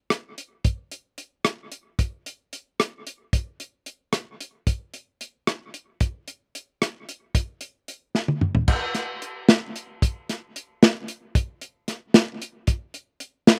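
With light reverb on an up-front sound, this short cut from a longer progressive instrumental piece is intricate and bright, featuring a lone acoustic drum kit in a straight 5/8 at 224 BPM in eighths, its dark, smooth tone built from a punchy kick, medium-tuned snare, rim clicks, hi-hat, toms, dark crash cymbals and a rolled-off top, entering at 0.1 s and playing a drum fill at 8.1 s that leads into a new section at 8.7 s.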